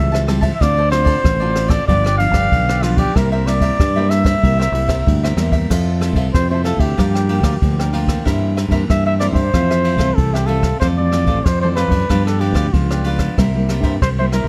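Playful and festive, this samba and choro excerpt at 94 BPM in F major puts a mellow, breathy trumpet with vibrato and analog delay up front on a smooth jazz-style melody, over a crisp picked cavaquinho, a fingerpicked classical nylon-string guitar in the background, a growly fingered electric bass, and a brushed drum kit with dark cymbals and a boomy kick that enters at 0.1 seconds, set in light reverb as the harmony moves from Am7 through Dm7, G7 and C7 into a new section at 5.7 seconds that opens on Fmaj7.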